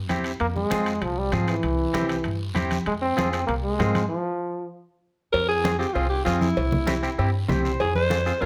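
A woody, thumpy upright bass opens this fiery cumbia fragment at 194 BPM in F harmonic minor, joined almost at once by twangy, slightly broken-up electric guitar, hard-handed congas, a raspy guiro and ringing timbales and cowbell set in the background. A bright, punchy trombone takes an up-front solo over Fm and C before a stop at 4.1 seconds. At 5.3 seconds a gritty alto saxophone with light vibrato and plate reverb carries the passionate melody, with a clean guitar fill at 7.3 seconds.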